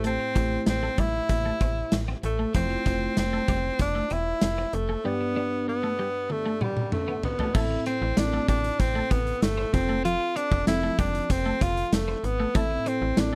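This urgent, moody 1980s-style pop excerpt opens with the whole band at once: a clear, forceful tenor saxophone up front carrying the melody with light vibrato and a smooth top, over a gated drum kit, a snappy FM bass and a mellow electric piano. The electric piano is soft and round with a noise layer, treated with chorus and phaser, while a clean, picked twelve-string electric guitar with ensemble chorus sits compressed in the background playing a riff. The FM bass has a metallic, digital attack that then decays, and the drums bring a punchy kick, a medium-tuned snare, bright cymbals, tambourine and toms inside a gated stone-room sound. The harmony moves from Am7 through Fmaj7 to G, and a drum fill from 6.3 to 7.5 seconds leads into a second section that moves from Am to F and back to Am. The mix is dry, with little reverb.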